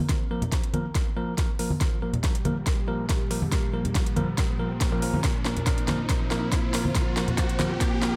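A dark analog pad with a slow attack holds sustained Bb5 chords under ringing, close congas as this cavernous deep dubstep excerpt opens at 140 BPM in a swung half-time feel, with a filter sweep running across the pad and a build-up and drum fill spanning the full 8.2 seconds. A punchy, overdriven electronic kick sits up front beside a deep house kit of fat snare and metallic, high-passed hats in small room ambience, while a bell-like tine electric piano adds clean, bright stabs through dub echo. From 2.0 seconds an electronic riser climbs in the background, all under light reverb.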